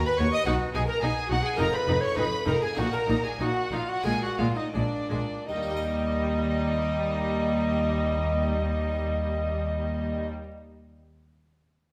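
A wet recital-hall reverb surrounds this stormy, dramatic fragment of a baroque-style concerto movement, which slows through its first 5.5 seconds before moving into a new section. A distant tenor recorder with an airy, wooden chiff carries the melody alongside a warm, focused violin section, while a second violin line, a lush viola section and a bright, plucked Flemish-style harpsichord fill in the middle. Beneath them, a smooth cello section sits in the background as a rich, expressive double bass section stands up front, the strings bowed in a steady 4/4.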